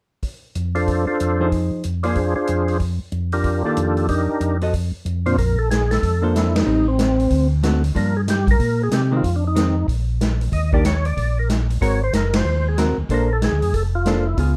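A swinging 4/4 groove at 187 BPM drives this soulful soul jazz organ trio excerpt in Bb major, with the big-band drum kit entering at 0.2 seconds on hi-hat, ride cymbal, snare and a boomy kick, its medium-tuned snare and rolled-off top sounding distant and roomy. Just after, a mellow, round tonewheel organ carries the bass line from F1 to C3, lightly overdriven and colored by chorus vibrato and a slow rotary speaker. A second tonewheel organ takes the melody from Bb2 to Eb5 with a percussive, full tone that adds a second harmonic click, sharing the same overdrive, chorus vibrato and slow rotary treatment. A clean, picked hollow-body electric guitar joins at 1.4 seconds with dark accompaniment. The harmony moves from Fm7 and Ebmaj7 toward Bbmaj9, passes through Am7b5, D7 and Gm7, and drops to a brief break before Ab9 resolves back to Bbmaj9, with full-band accents at 6.5 and 12.3 seconds. 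A moderate small room gives the dark, warm production its intimate glow.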